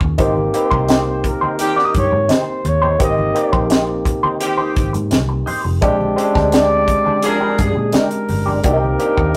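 Bittersweet and smooth, this lush 1970s-style soul fragment sits on a tight funk drum kit with a high-tuned snare, a dark, round, foam-muted electric bass, very quiet low-tuned congas, and a barky, lightly overdriven tine electric piano. A twangy clean electric guitar plays a riff through wah with a warbly pitch drift, while a breathy flugelhorn carries the melody from 0.6 seconds with scooped notes and light vibrato, and a clear horn section adds jazz-style stabs between 1.6 and 7.7 seconds. The harmony moves from Abmaj7 to Bb13 and then Cm7, all heard in a rough rehearsal-room sound with tube saturation and moderate reverb.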